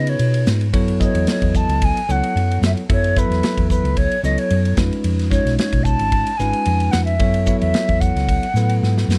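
Nocturnal and driving, this short electric jazz fusion excerpt sets a silver concert flute, vibrato-laden and crisp in attack, over the bright, bell-like chords of a tine electric piano moving between C#9 and F#m7. A round, punchy hollow-body bass sits prominently beneath a polished, up-front studio drum kit with a punchy kick and ride cymbal, all with a lightly swung sixteenth-note feel. The dark, dry production closes on a drum fill at 8.8 seconds.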